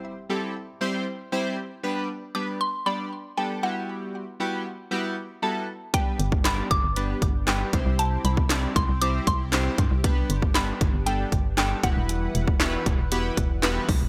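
Bright, 1980s-style digital production with light reverb gives this euphoric, summery dance-pop excerpt a polished sheen from the first second. It opens on a woody, round mallet-like synth pluck carrying the melody in a high register, coloured by chorus, phaser and delay, over glossy, up-front retro synth keys built from pulse and sawtooth waves with a filter sweep and a pumping sidechain feel. At 5.9 seconds a punchy house drum kit arrives up front, its overdriven handclaps, hi-hat, kick and cracking snare wrapped in gated reverb and the ambience of a large room. A soft supersaw enters at the same moment, laying smooth, evolving, detuned chords in the background with ensemble chorus. From 6.2 seconds a hollow, dark, organ-like FM bass adds percussive low notes that pump along with the keys and pads beneath a progression moving through C, G and Em(add9).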